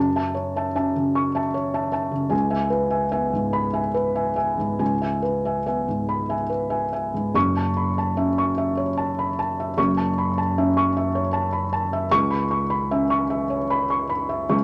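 Melancholic and wistful, this short neoclassical minimalist piano passage drifts at a rubato 50 BPM in 6/8. A solo felt-muted upright piano, dark and intimate with audible action noise and thick felt, sits up front in moderate studio reverb, spanning F#1 to C#6 and moving between F#m7 and C#m7 over a phrase that repeats from 7.3 seconds, tuned to A4 = 441 Hz.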